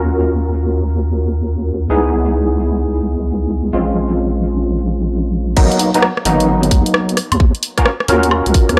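An overdriven tine electric piano drives this short UK garage cut with barky, gritty stabs pushed through a combo amp and coloured by ensemble chorus and tape echo. Beneath it, a deep, dark wobble bass blends square and sine tones into a detuned, compressed sustain, with chorus and sidechain pumping adding a breathing bounce. The mood is moody yet bouncy, with a swung two-step feel over a minor-seventh progression moving from D#m7 through C#m7 and A#m7. At 5.6 seconds the drop arrives: a tight, up-front electronic kick enters alongside a layered garage kit of crash cymbal, warm hi-hats, rim click and woodblock, as the chords settle onto G#m7 and back to D#m7. The whole piece sits in a digital ambience with a dry, gritty hardware character.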